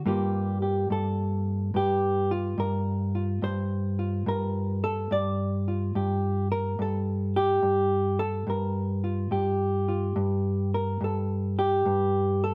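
A clean, dark hollow-body jazz guitar plays alone from the very start, fingered and compressed and sitting up front over a single Gm7 harmony in an unhurried swung 4/4, giving this moody, cool solo jazz excerpt the light reverb of a live room as it runs to 12.5 seconds.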